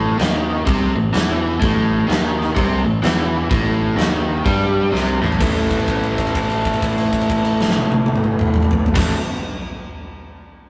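A rough rehearsal-room recording with tube saturation and a moderate stone room reverb frames this raunchy, driving cut of blues rock and southern rock: a power trio swinging in 4/4 at 127 BPM on an A5 chord. An overdriven, double-tracked electric guitar riff sits up front over a growly, direct picked electric bass, and a huge arena drum kit joins at 0.2 s with bright crash cymbals, a fat snare, a punchy kick and toms. A drum fill at 4.9 s leads into a new section built around a held note from 5.4 s.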